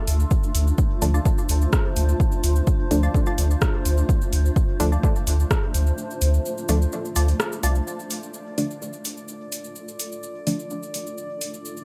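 A cloudy, blurred granular pad opens this cavernous, hypnotic dub techno excerpt, holding sustained chords inside its own reverb and pumping against the sidechain. Almost at once a round sine sub bass, a grainy, saturated cabasa and a deep house kit with metallic, overdriven hats and rim click arrive, along with a punchy, tape-kissed analog kick placed up front. A muted, detuned sawtooth dub stab with chorus, phaser and dub echo, and a crisp, wave-folded wavetable stab riff both pluck short chords over the pulse, while a filter sweep works on the synth stab through the first section. The kick drops out at 6.0 seconds, the bass and wavetable riff fall away soon after, and from 8.3 seconds a calm, glassy texture of drifting overtones floats above the pad in chorus and reverb. The whole sits in a spacious digital ambience, with the drum kit carrying the sound of a large room.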